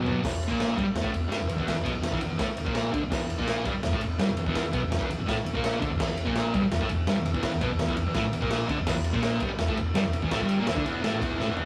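Raw, rowdy garage rock in a straight 4/4, cut from a longer piece and driven by a dark, double-tracked fuzz guitar riff that sits up front and rests on an E5 chord through the low and middle register. Underneath, a picked electric bass adds a bright, growly, overdriven fuzz tone, though it sits very quietly in the mix. The acoustic drum kit is crunchy and saturated, with a punchy kick, a medium-tuned snare, crash and ride cymbals and toms, all placed up front with a gritty, rolled-off top and a pumping room sound. Drum fills open the track at 0.0 seconds and return at 11.4 seconds, framing a single driving section. The whole thing carries the rough feel of a rehearsal-room recording, with a moderate studio reverb adding a short halo of space.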